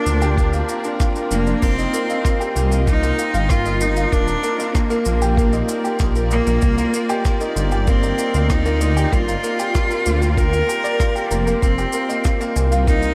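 Piano and strings electronica in C minor at 96 BPM, this intimate, hypnotic excerpt drifts through a dreamy mix soaked in cathedral reverb, with chords moving from Gm7 through Ebmaj7 and Cm7 to Fm11. A focused solo cello carries the melody up front with vibrato and delay, while a brilliant, woody upright piano plays a riff, a rich string section holds sustained chords in the background with sidechain pumping, and a very quiet, round pluck traces arpeggios. Underneath, a rumbling, detuned saw bass pumps against a muffled, thumpy electronic kick that enters at 0.4 seconds, and a brushed jazz kit adds airy shaker, rim clicks and dark cymbals.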